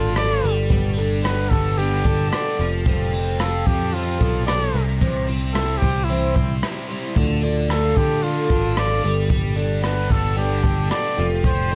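A straight 4/4 pulse at 112 BPM comes from a jazz brush drum kit entering at 0.2 seconds, with hi-hat, rim click and a boomy kick, beneath a round, up-front picked electric bass in this wistful, reflective folk rock and heartland rock excerpt. A shimmering, octave-doubled twelve-string acoustic guitar plays accompaniment while a biting, double-tracked overdriven guitar carries a riff through chords moving from Gadd9 and Fadd9 to C and Dm. Over them a smooth-topped trumpet sings the melody with classical vibrato and digital delay, all set in a dark, warm production with light reverb.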